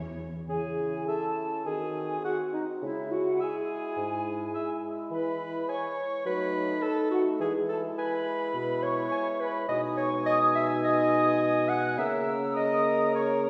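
Set back in a wet scoring-stage reverb, this cinematic film cue is playful, whimsical and mischievous, moving at 105 BPM in a straight 4/4 in C# minor before shifting to G# minor at 9.7 s. A veiled, muted cello section sounds a single low note at the very start. Then at 0.5 s a mellow, up-front clarinet and an airy, distant large flute ensemble carry the upper lines over a dark bassoon and sustained chords from a roomy French horn section, joined at 1.1 s by a smooth-topped cor anglais.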